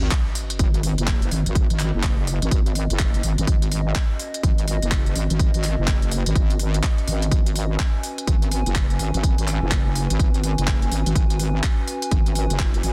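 A swung sixteenth-note groove in four drives this gritty, aggressive bass house excerpt, anchored by a punchy, overdriven electronic kick that sits up front from 0.1 seconds. A garage drum kit adds crisp hi-hats and handclaps with a tape-warm edge, and both drum parts carry the sound of a large room. The heavy wobble bass dominates the low end: a detuned, saturated unison of square and sine tones with chorus and sidechain pumping, held over a single minor chord. Higher up, a dark, lo-fi pad warbles with nostalgic chorus and its own reverb, pumping with the same sidechain. A very quiet sub drop marks the opening impact and ends at 1.6 seconds, while the dense, heavily limited master carries a faint mains hum.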